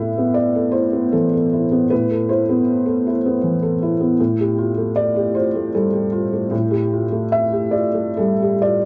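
Peaceful and hopeful, this short fragment of neoclassical minimalist piano drifts in a rubato 3/4, a solo felt-muted upright piano moving from Amadd9 to Fadd9/A at 4.2 seconds. The piano sounds soft, mellow and boxy, with an intimate closeness. It sits in a small, reverberant room, tuned a touch high to A4 = 445 Hz, with a dark, rolled-off top end.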